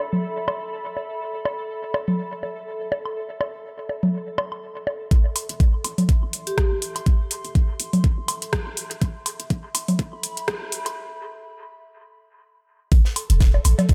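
A punchy sine sub bass with a pitch-drop attack sits up front in this quirky, hypnotic minimal techno excerpt in A minor at 123 BPM, arriving at 5.1 seconds alongside a knocking, layered electronic kick and a garage kit of metallic hats and rim clicks, all under sidechain pumping on the bass and a swung 16th feel. Before that, a warbling, nostalgic lo-fi pad of detuned square and triangle tones with ring modulation and chorus breathes under sidechain pumping alongside a bright, pulsing gated texture, soon joined by tape-warm congas, bongos and woodblock steeped in dub echo. A dark, ringing vibraphone note on G4 flickers briefly in the background with 12-bit sampler grit, while the tension builds into a break and then a drop at 12.9 seconds, where an airy, polished studio kit adds hi-hat and a medium-tuned snare and the gated texture returns moments later. The mix is echo-heavy, filtered at both ends and set in a small, lightly reverberant room.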